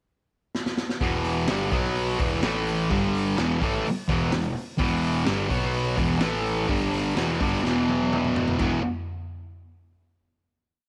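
A straight 4/4 garage rock stomp at 126 BPM opens with a drum fill from the raw garage kit at 0.5 seconds, its punchy kick, medium-tuned snare, hi-hat, toms and china cymbal sounding gritty and saturated in a small, pumping room with a rolled-off top. At 1.0 seconds a thick, bright, double-tracked fuzz guitar bursts in up front with a swaggering power-chord riff moving through E5, B5, A5 and G5, while an overdriven picked electric bass sits in the background doubling the riff in quarters. After another drum fill, the rowdy piece ends on a final chord ringing out from 8.6 seconds.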